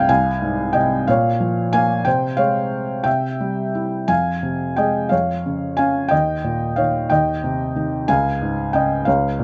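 In a 6/8 with a loose, rubato feel, this short classical excerpt from a longer piece unfolds as a dark, melancholic solo for felt-muted upright piano, spanning C2 to Ab5 across its 9.4 seconds. The piano sits up front, soft and intimate, its muffled tone carrying audible action noise that draws the listener close. Light reverb and a rolled-off top end keep the sound hushed as the harmony drifts through mostly minor chords before moving onto major ones.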